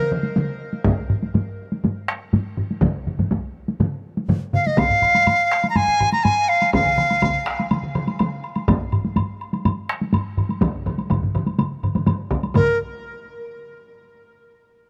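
Japanese traditional taiko drum ensemble music at 123 BPM in a straight 4/4, driving and powerful and cut from a longer piece, sets solo taiko drums beside three taiko ensembles struck with hard and heavy sticks, one of them vintage, band-limited and up front, while a bright, reedy large dizi with a buzzing membrane and vibrato carries the melody between Bb4 and Bb5, chiefly from 4.5 to 7.7 seconds, and a woody woodblock joins at 4.8 seconds, all set in light reverb.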